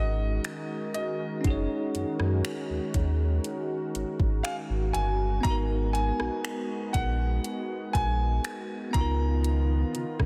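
Contemporary R&B with a romantic, dreamy mood, this short excerpt drifts through lush extended chords beneath a clear, intimate grand piano melody whose tape echo and audible action noise give it a natural, close presence. A bell-like tine electric piano and a vintage, detuned analog pad with subtle chorus and sidechain pumping fill out the harmony, while a deep sine sub bass with an octave and a soft, produced drum kit of finger snaps, hi-hat, kick and rim click sit up front, the drums entering at 0.4 seconds. A delicate, very quiet celesta adds a sweet glimmer from 1.4 to 5.9 seconds, and the mix is soaked in a moderate cathedral reverb.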